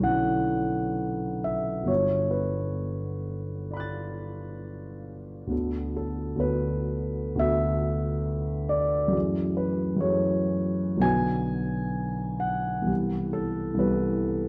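A dark, warm production sets a lone concert grand up front in a moderate concert hall, its deep bass, open tone and long sustain ringing from G1 up to A6. This impressionist classical solo piano excerpt drifts with rubato and uneven beats, its nocturnal, wistful mood carried by lush extended harmonies that move from Bm11 through Gmaj9, D69, F#m9 and Bm6. The short passage closes on Cmaj7 at 12.9 seconds before the excerpt ends, cut from a longer piece.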